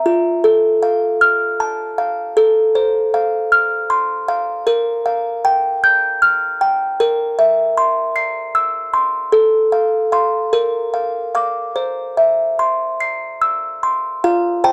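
A dry, close 1970s-style studio recording with a touch of studio reverb places a delicate, tinkling, plucked music box up front, its small-box voice playing alone from 0.0 to 14.7 seconds through a dreamy, innocent classical lullaby in F major and 6/8 at an unhurried 48-52 BPM, moving from F through Gm7/Bb and C7/Bb before settling on Bb and C in this fragment cut from a longer piece.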